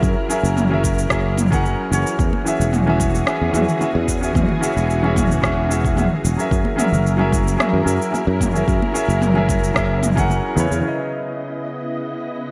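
A relaxed, sunny sunset chillout groove at 111 BPM in straight 4/4 rides on an overdriven, deep electronic kick and a filtered deep house kit of rim click, shaker and toms, with very quiet, high-tuned congas entering at 2.3 s, a growly, punchy fretless bass up front until 10.8 s, a smooth vintage grand piano with digital delay, and a silky, warbling string machine with ensemble chorus sitting in the background, all drifting from F#7 and E69 to a closing C#m9 in a lush hall with a bright 1980s-style digital sheen.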